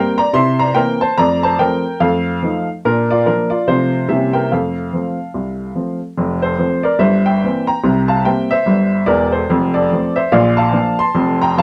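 Swinging and playful, this short stride piano jazz passage in F major moves at 144 BPM in 4/4 with a light swing on the eighth notes, cut from a longer piece. A lone upright piano, clear and woody with a slightly detuned edge, sits up front and spans from deep bass notes to bright upper registers, running through changes like C7, F7, Bb and a C7b9 before a second section begins at 6.2 seconds and settles onto Bbmaj7 near the close at 11.6 seconds. A moderate studio ambience gives the instrument a little air around it.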